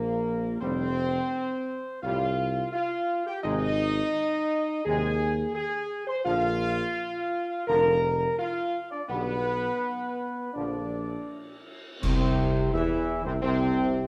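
A mellow French horn section sits up front with light vibrato, sustaining chords through this short, regal fanfare cut from a longer classical piece. Above it, a dark, smooth-topped trumpet section carries the triumphant melody, while a clear trombone section, also with light vibrato, holds sustained harmony beneath, and a mellow solo tuba anchors the bass. The tempo is a steady 85 BPM in a straight 4/4, tuned slightly below standard pitch, and the harmony moves through chords such as Fadd9, Ab, Bb and G/B before landing on C. At 9.1 seconds a cymbal swell, clash cymbals and concert bass drum enter with a dark, acoustic character, and the full band strikes an accent at 12.0 seconds as the music shifts into a new section. A wet recital-hall reverb and a dark, warm production give the brass a ceremonial grandeur.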